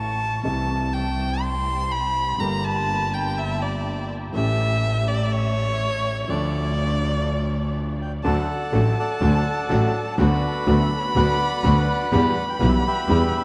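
This tango, cut from a longer piece, moves at 123 BPM in 4/4 with an elegant, playful rubato feel, opening in D minor and turning to D major at 8.2 seconds. A bowed solo violin, warm and focused with vibrato, sits up front as the second line and takes a solo through the opening until 8.2 seconds. Beneath it, a vintage-sounding grand piano provides the accompaniment, while a clear, bowed double bass with vibrato holds the low end up front. A very quiet studio string section adds soft-attack sul tasto stabs that feel pure and floating. At 8.0 seconds a reedy, dark bandoneon enters with a smooth melody. The whole ensemble sits in a vast, echoing space, with a huge, wet ambient reverb trailing around the playing.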